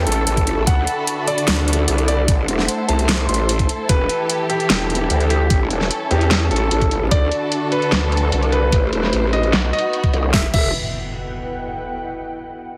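A downlifter and an ethereal, airy pad open this menacing, chaotic heavy wobble dubstep excerpt in E minor at 149 BPM in half-time, where a growling, saturated bass with chorus and overdrive, dark woody strings with vibrato and sidechain pumping, and an intimate concert grand piano melody through tape echo ride over an electronic drum kit with a huge snare, metallic hats, a filter sweep and a knocking kick, all under a heavily compressed radio sound, until an impact lands at 10.5 seconds.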